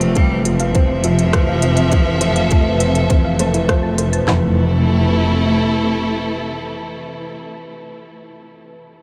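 A dreamy mix soaked in a huge ambient reverb gives this short piano and strings electronica cut a luminous, hopeful glow, opening on an Fmaj7 chord in a drop that runs to 4.3 seconds. A dark upright piano plays the riff throughout, its mellow, worn, slightly detuned tone carrying audible action noise and long sustain through analog chorus, delay and shimmer reverb. A clear, focused solo cello sings the melody up close with vibrato, while a lush studio string section holds sustained chords from a distance with portamento and a sidechain pumping effect, both ending at 7.4 seconds. A bowed double bass section anchors the low end on F1 with expressive vibrato and the same pumping motion. The organic electronic drum kit sits up front with a tight kick, woody snare, handclaps and toms under smooth hi-hats and rim clicks in a small room, while a very quiet, soft, round pluck adds gentle arpeggios until about 4.5 seconds, just after the drums drop away around 4.4 seconds, and the piano rings on to 9.0 seconds.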